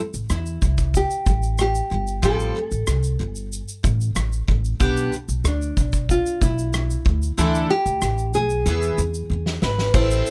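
A small, fingerpicked nylon-string guitar carries the tender, reflective melody with a touch of delay, sitting up front in this short acoustic pop excerpt in A minor at 93 BPM. Beneath it, a bright, full-bodied, double-tracked steel-string guitar picks through Am7, Fadd9, G/B, Dsus2 and E, while a woody, thumpy pizzicato upright bass anchors the low end. A loose indie kit with a fat snare, punchy kick, dark cymbals, rim clicks and shaker sounds distant and roomy in a dry mix, adding a fill from 9.3 to 9.9 seconds.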